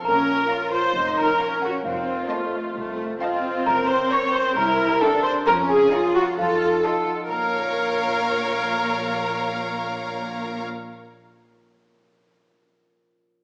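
An up-front viola section carries the accompaniment in this quirky, mischievous cinematic cue, its bowed vibrato sounding rich and focused. At 132 BPM in a straight 4/4 and set in Bb minor, the whimsical passage moves from Bbm through F7, Gb and C7 before turning on an F7b9 and returning to Bbm at 7.3 seconds, where a second section begins. A bell-like, delicate celesta with hard felt hammers sings the melody from the background, joined in the melody by a lush violin section, while a clear, close violin section adds a second line and a concert harp rings out thumb-plucked arpeggios. A smooth, even cello section and a double bass section with a smooth top anchor the low end. Moderate scoring-stage reverb surrounds the ensemble, yet the whole piece comes across through a small-speaker sound, and the harp rings on alone to 11.2 seconds as this fragment of a longer piece cuts off.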